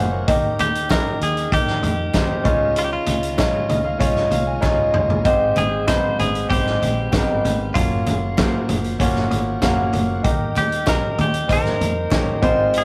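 A straight 4/4 pulse at 96 BPM drives this hopeful piano-driven pop piece, tuned to A4 = 436 Hz, with a loose indie drum kit entering at 0.3 s, up front with a fat snare, punchy kick and gritty, saturated tone, adding a fill from 4.6 to 5.3 s. The clear grand piano carries the accompaniment close and present, with audible action noise and long sustain, adding fills as the chords move from Eb through Dbadd9, Abmaj7 and Gbmaj7 back to Eb. A bright, twangy, direct-recorded clean electric guitar picks out the melody from 0.6 s, supported by a round, foam-muted vintage fingered bass, a very quiet piping tonewheel organ with key click and chorus vibrato, and faint, crisp group handclaps, all in a rough rehearsal-room recording with a wet booth ambience.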